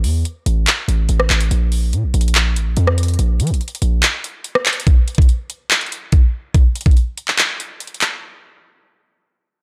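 A hard-hitting 808-style bass and a trap drum kit open this short cut from a longer hip hop and trap piece, setting a menacing mood in a half-time feel. The electronic, produced kit sits up front, with a knocking kick, metallic hi-hats, handclaps and rim clicks. The bass is punchy and heavy: a sine tone with a noise layer, a fast attack and a decaying tail, also placed up front and ranging from A1 to F3. The bass stops at 4.0 seconds, and the kick is muted until 4.9 seconds, leaving the other drum sounds to carry the groove. A break arrives at 7.4 seconds, and the drums stop shortly after. Digital ambience wraps the dark, warm production.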